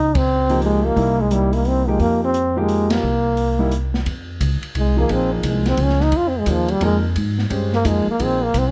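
Swinging in 3/4 at 174 BPM with lightly swung eighths, this cool, smoky stretch of small-group jazz in F minor, tuned to A4 = 438 Hz, sets a mellow, close-miked trombone with vibrato up front over thumpy, gut-strung pizzicato upright bass and a dark, smooth acoustic kit with a boomy kick. The band hits accents together at 0.1 and 2.9 seconds, and from 0.5 seconds an intimate, vintage-sounding grand piano with audible action noise and deep bass comps through chords such as Dbmaj7, C7#9 and Fm7. At 4.1 seconds the trombone takes a solo over Bbm7 and Fm7 changes until the music is cut off, all in a close, detailed sound with light reverb.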